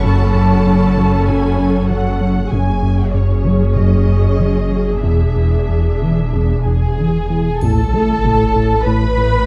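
A smooth, gliding, wave-folded synth bass riff drives this mysterious, tense suspense film-score excerpt at 95 BPM, beneath a symphonic violin melody with vibrato, lush viola accompaniment with portamento, a rich cello section, a woody double bass section and a deep, clean sine sub bass drone, while a soft-attack high violin texture drops out at 2.2 s, a close studio violin section adds a second line from 6.7 s, and at 7.6 s the harmony drops away as a huge sub-drop impact and a faint, bright triangle arrive, all in a dark production with moderate recital hall reverb.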